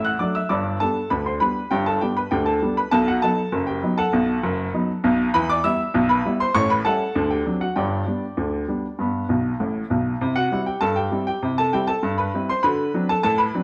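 A clear, woody upright piano carries this playful, cheerful ragtime excerpt on its own, its short-sustain notes sitting up front and spanning F#1 to F#6 at a straight 99 BPM in 2/4, in G major with tuning a touch below standard at A4 = 438 Hz. The harmony moves through G, B7, Em, A7 and D7 before a piano fill at 9.3 seconds leads into a new section on C at 10.2 seconds that turns toward D7. A moderate stone-room reverb gives the live performance a natural sense of space.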